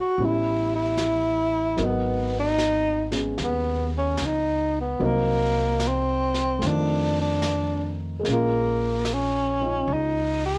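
A breathy, whispered tenor saxophone sits up front in this melancholic, intimate swung jazz ballad fragment, its subtoned, scooped notes, soft attack and vibrato floating over a dark grand piano with audible action noise, a woody, growly pizzicato upright bass and a brushed kit tinted by cassette tape, captured in a small room as a home cassette recording.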